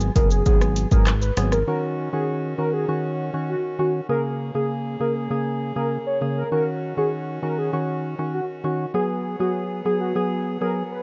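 This dancehall cut moves at 99 BPM in a straight 4/4, opening with an electronic afro-pop kit of deep kick, metallic hi-hats, handclaps, rim click and shaker, roughened by vintage 12-bit sampler grit and sitting up front, alongside a fat, detuned sawtooth analog bass with a filter sweep. Both the drums and the bass drop away within the first two seconds, leaving the sultry, tough mood to the remaining parts. A percussive organ stab, hollow and warbling with a noise layer and chorus, punches short decaying chords through the whole passage, while a velvety synth lead with vibrato, chorus and delay carries the melody from 0.2 seconds onward. At 1.7 seconds a reedy, breathing pedal harmonium enters with mellow, close-miked sustained chords that pump against a sidechain. The harmony cycles through minor sevenths, Abm7, Ebm7 and Bbm7, under a dark production with light reverb, and the recording is a short cut from a longer piece.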